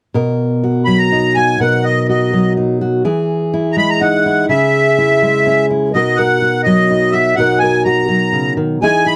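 Anthemic and nostalgic, this short folk excerpt moves in a steady, straight 3/4 at 124 BPM in B major, with a fingerpicked steel-string acoustic guitar laying down a dark, up-front accompaniment under chords of Bmaj7, Emaj7 and C#m. From 0.8 seconds a reedy, sweet accordion with light tremolo tuning carries the melody high and close, its airy tone set against the guitar's darker body. Light reverb gives the pair a gentle sense of space as the phrase turns back to Bmaj7 at 5.9 seconds for a second section.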